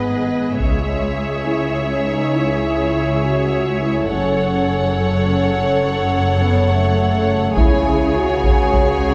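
This short portion of a longer piece sits in a reverberant church or concert-hall acoustic, giving it a sense of space. It is an epic, cinematic orchestral film cue in C# minor, heroic yet dark, moving in a slow 12/8 at 69 BPM to the dotted quarter. A focused violin section carries the melody with vibrato and a smooth top, while a more distant second violin line and even, bowed violas fill in beneath it. Mellow, vintage-toned French horns hold sustained chords throughout, and lush cellos join clear, intense double basses on the bass line. A taiko ensemble, struck with heavy sticks in a live room, hits at 0.6 s and returns at 7.6 s, as the harmony moves from G#m through C#m and F#m back to C#m.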